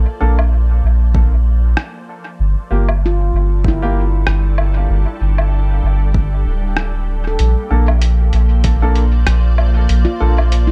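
Ambient dub with a meditative, spacious mood, cut from a longer piece and set in an echo-heavy mix that moves between Bbmaj7 and Gm7 chords. A soft, organ-like pad fades in under chorus and its own reverb, while a mellow, ringing handpan plays arpeggios through dub echo and a round, deep sub bass sits up front. A clear, woody upright piano adds echoing stabs from 0.2 seconds, a muffled, pitched-down sampler kit of hi-hat, rim click and woodblock enters at 0.4 seconds, and a layered, tape-warm electronic kick with studio reverb joins at 1.1 seconds.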